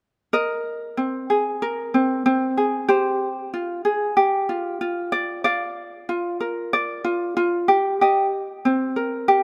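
Bathed in a moderate plate reverb, this short pop excerpt features a light, fingerpicked acoustic ukulele sitting up front, playing a wistful, reflective accompaniment at 94 BPM in 4/4 with a gentle sixteenth-note swing, moving from 0.3 to 9.4 seconds through Abadd9, Fmadd9, Bb and Cm7.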